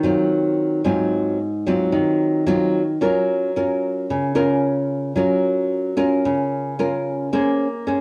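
A solo nylon-string guitar carries this short bossa nova excerpt, its woody, fingerpicked tone shaped by old strings and set up front in the mix. The mood is melancholic and smooth, moving at 111 BPM in a straight 4/4 feel, and the piece is tuned slightly above standard pitch at A4 = 441 Hz. The guitar spans a range from Ab2 up to C5, playing in a classical manner across the full 8 seconds. Its harmony moves from Ab6 to Gbmaj7 at 3.0 seconds, then reaches Bbm9 at 7.3 seconds just before the clip cuts off. A moderate stone room reverb surrounds the instrument, giving the live performance a sense of space around its intimate sound.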